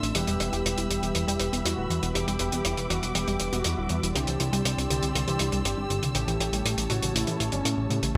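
A bright 1980s-style digital production set in a lush hall reverb frames this short, melodramatic and nostalgic italo disco passage in E minor at 120 BPM, moving from Em to Cadd9 at 4.2 seconds and A7 at 6.2 seconds. A thick, detuned sawtooth unison lead with vibrato carries the melody through digital delay over dark, expressive bowed strings, while a glossy chorused polysynth adds retro stabs with vintage 12-bit sampler grit. A fat analog bass with a filter sweep and a damped 70s drum kit, dry and up front with dark cymbals in a small room, drive the groove, and a warbly, lo-fi dusty pluck enters at 0.2 seconds with chorused, delayed arpeggios in the background.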